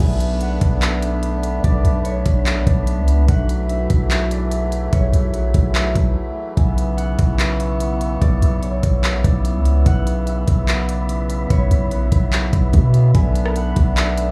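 Hazy and spacious, this atmospheric cloud-rap cut from a longer piece moves at 146 BPM in a half-time 4/4 feel in B dorian, with a distant fingerpicked concert harp carrying the ringing melody through tape echo over reedy, breathing pedal harmonium chords that pump against the sidechain. A deep, mellow 808-style bass with a fast attack and long decay sits up front beside an overdriven trap kit of knocking kick, crisp hats, handclaps, rim clicks and crash, re-recorded in a small room, while an airy, wind-like tuned noise texture with its own reverb hovers in the background. The chords move from Bm7 through F#m11/B to C#m7, with a brief break at 6.2 seconds and a return to Bm7 at 13.1 seconds in an echo-heavy, close-sounding mix.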